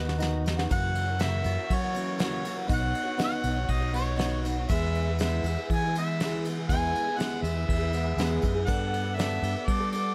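A mellow harmonica with light vibrato and scooped notes carries the melody from 0.7 seconds, entering after a brief drum fill in this nostalgic, open-road stretch of folk rock and heartland rock at 120 BPM in E major. A bright, shimmering twelve-string acoustic guitar, a round, amped fingered electric bass and a soft brush kit with a fat snare and tight kick sit up front. Beneath them, a very quiet tonewheel organ with key click and rotary speaker holds sustained chords and a jingly tambourine adds color, all in a dark, dry production that moves through F#7, Badd9, E and Gadd9.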